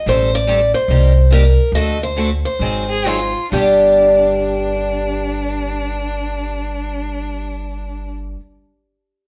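Acoustic string swing in the jazz manouche style, virtuosic and swinging in 4/4 with a lilting 8th-note swing, easing from about 148 down toward 126 BPM as it slows through the opening 3.5 seconds of this fragment of a longer piece. A bright, boxy parlour-style picked steel-string guitar with fresh strings carries the melody up front, while a second picked guitar supplies the accompaniment beneath and a woody, thumpy pizzicato upright bass on gut strings anchors the low end through changes like Am7b5, Cm7, D7 and Ab6 resolving to G. From 2.9 seconds a single bowed violin adds a quieter, expressive second line with vibrato, portamento and a smooth top, all set in a live-room band sound with a fairly wet studio reverb.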